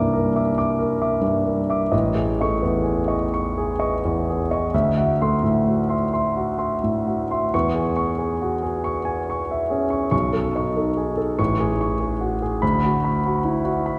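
A clear concert grand piano with deep bass, long sustain and audible action noise carries this serene, hazy impressionist classical solo in a rubato 6/8, drifting through rich extended harmonies such as C9, Amaj7#11 and B9 within a brief passage cut from a longer piece, all set in a wet concert hall reverb that lends the sound a sense of distance.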